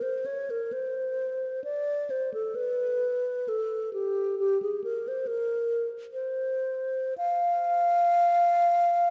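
A mellow, hollow alto flute plays alone from the start, close and up front with an airy straight tone and tongued notes between G4 and F5, shaping a lonely, yearning classical line in a rubato 3/4 at roughly 54-71 BPM, all bathed in a wet church reverb across this 9.1-second fragment cut from a longer piece.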